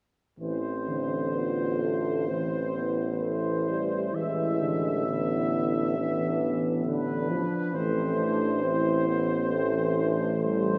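A mellow trumpet section with light vibrato and a soft attack carries the melody of this elegiac, solemn classical hymn for brass band in A minor, moving at a rubato 61-69 BPM, while a vintage-toned French horn section sings a second line in the background, a dark euphonium and a distant, warm euphonium fill out the accompaniment, and a clear tuba anchors the bass on A1, all bathed in a long church reverb over an Am to E7/A and back to Am progression in this brief excerpt from a longer piece.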